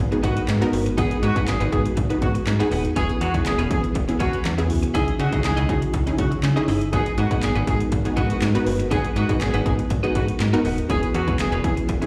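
Heard through a venue's PA with a light club reverb, this energetic, confident dance-pop excerpt moves at 121 BPM in G# minor over G#m7, E6 and C#madd9 chords. A punchy analog drum machine with tape-tinged kick, snare, hi-hat and handclaps sits up front beside a snappy, metallic slap-like FM bass, both driving from the start, while a very quiet electronic impact marks the opening second. A lush, detuned unison pluck and the bass pump with sidechain, a clean twelve-string electric guitar riff carries subtle chorus and slapback echo, a soft, breathy pad holds sustained chords underneath, and a mellow, distant horn section with light vibrato and plate reverb, slapback and tape echo carries the melody from 0.2 to 11.7 seconds.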